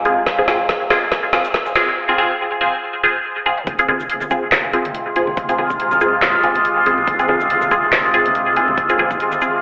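A muted, resonant dub chord stab sits up front with phaser, 12-bit sampler grit and dub echo, over a detuned drone of moving overtones that holds sustained F minor chords in this dark, meditative deep dubstep excerpt at 141 BPM, swung and half-time. A deep house kit with woody snare, dark hats, claps, shaker and toms, plus a layered electronic kick, drives a filter-swept build-up with drum fills before the drop lands at 3.7 s, where soft-handed congas with dub echo enter in the background at 3.9 s. A soft triangle-and-sine wobble bass hums low beneath it all, inside a dreamy plate-reverb haze with vinyl crackle and a telephone-like filtered tone.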